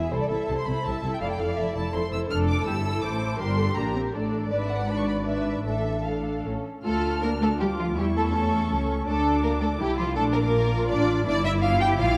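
In a rubato 3/4 at 163 BPM, this restless, stormy classical-period string orchestra movement in D minor, cut from a longer piece, sets a focused, vibrato-rich violin melody over a smooth, even second violin line, with lush viola accompaniment, a warm cello bass with a smooth top, and an up-front double bass section, all bowed and bathed in moderate concert hall reverb as the harmony turns toward new ground at 6.8 seconds.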